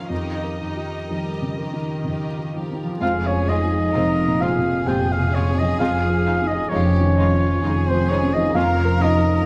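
Captured with close, detailed microphones on a scoring stage with moderate reverb, this cinematic excerpt in F minor moves at a rubato 64 BPM in 3/4 with a longing, moving mood, as a soft, felt-muted upright piano with audible action noise plays the accompaniment beneath a clear violin section's melody in the background, a rich, smooth-topped second violin line, background violas and distant cellos holding the bass, and a very quiet, ringing, thumb-plucked harp arpeggio, before a solo oboe adds a second line at 3.0 seconds alongside a French horn section's sustained chords and a distant double bass section.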